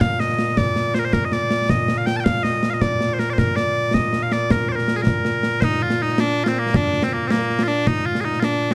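The recording has a dark, warm production with light reverb. This short cut from a longer piece of Scottish traditional pipe music feels proud and ceremonial, moving in 6/8 at 107 beats per minute counted in dotted quarters, with a straight feel in B-flat major. Loud bagpipes carry the melody as a continuous, up-front solo, their bright, piercing tone spanning Bb2 to A5 and bathed in plate reverb. Concert snare and bass drums play throughout with bright cymbals, sounding acoustic and set in a small room just behind the pipes. The tune shifts into a new section at 5.6 seconds and runs on until the cut at 8.7 seconds.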